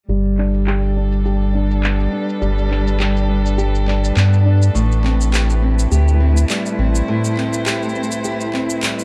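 This delicate, hopeful folktronica excerpt opens at 0.1 seconds with everything entering together: a fingerpicked nylon-string guitar playing arpeggios, a distant bowed string quartet holding sustained chords, a round analog bass, and an electronic shaker with handclaps. At 103 BPM in 4/4 with a gentle swing on the sixteenths, the music sits in G major, moving from G to Am7 at 4.8 seconds. The small, fresh-sounding guitar carries vintage 12-bit sampler grit, a low-pass filter and delay, and a filter sweep runs across it throughout. The quartet, one player per line, sings with vibrato, soft attacks and expressive portamento in a chamber setting. The deep, up-front bass blends square and sine tones with a fast attack, a filter pluck and tube saturation, carries its own filter sweep, and drops out at 7.0 seconds as a break begins, while the low-pass filtered, produced percussion continues to the end under a dark, warm production with light reverb.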